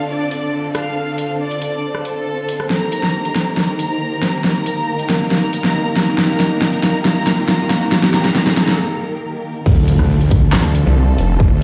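Heard through a big sound system in a bare room with a lush hall reverb, this chaotic, heavy half-time wobble dubstep fragment opens with rich, bowed studio strings holding chords under a cloudy, evolving granular pad, both pumping with the sidechain, while an intimate chamber violin section carries a sul tasto melody through delay. A dubstep kit with a huge snare, metallic hats, handclaps, rim clicks and crash cymbal builds through a drum fill as a background riser and impact rise, and after a short break the drop lands at 9.7 seconds with a punchy electronic kick and a saturated, chorused wobble bass. At 10.5 seconds a snarling, detuned saw bass growls in up front with overdrive.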